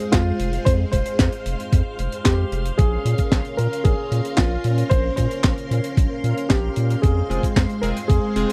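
A dry, close recording with a 1970s studio feel opens this brief cut from a longer italo disco piece in F minor, moving at 113 BPM in a straight 4/4 with a bittersweet but danceable mood. A dark, intimate baby grand piano carries the melody between F4 and C5, its audible action noise and short sustain trailed by tape echo. Beneath it, a lush string machine holds slow-attack chords with ensemble chorus and a long release, and a tight funk kit of handclaps, hi-hat and high-tuned snare plays from the start, joined at 0.1 seconds by a round, deep analog bass and a thumpy, tape-warm electronic kick. The harmony moves from Fm to Bbmadd9 and back to Fm at 7.0 seconds. A glossy, chorused polysynth joins at 7.3 seconds with bright stabs built from pulse and sawtooth waves and a filter sweep.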